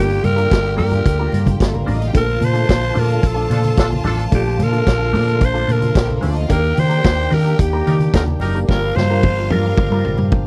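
Disco with a sultry, danceable mood, this short cut from a longer piece sits on a straight four-beat groove, moving from Gm7 through Bbmaj7 and Ebmaj7 before returning to Gm7 at 8.7 seconds. A growling alto saxophone carries the melody up front, its breathy, raspy subtone and scooped notes close-miked in a jazz style. Beneath it, a hollow-body short-scale fingered electric bass sounds dark and round, while a vintage acoustic drum kit with a tight kick, medium-tuned snare and saturated, gritty character drives the track and closes with a drum fill from 8.7 seconds. A lush string section adds an intense, bowed second line, and a clear, tight horn section punches in with stabs at 0.0, 3.5 and 7.9 seconds. Further back, a mellow electric guitar with wah plays accompaniment, a lightly overdriven tonewheel organ with key click and chorus holds sustained chords, and very quiet low-tuned congas add soft-handed percussion, all captured in a dry, close 1970s-style studio sound.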